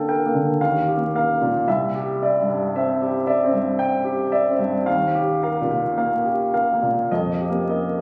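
Impressionist classical solo piano in a dreamy, hazy mood, this short cut from a longer piece has a clear, polished baby grand sitting up front, moving in a rubato 3/4 through add9 chords toward a closing F9sus4, spanning C2 to G5 and tuned to A4 = 442 Hz, heard through the moderate bloom of a concert hall as if captured on a phone in the room, with club reverb and vinyl crackle adding grain.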